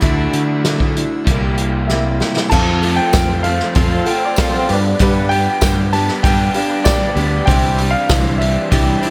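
Hopeful and open-road in spirit, this short folk rock and heartland rock excerpt opens with bright, freshly strung acoustic guitar carrying a slapback echo, a crunchy double-tracked overdriven guitar riff, growly fingered electric bass and a punchy, dark-cymballed vintage drum kit. As a drum fill rolls in at 1.9 seconds, a grand piano melody with digital delay arrives, joined at 2.5 seconds by a very quiet, gritty reed electric piano with fast tremolo and a faint tonewheel organ with slow rotary swirl, while a jingly tambourine sits in the background and a woody upright piano adds a brief second line. A lush hall reverb gives the whole band a big arena sound.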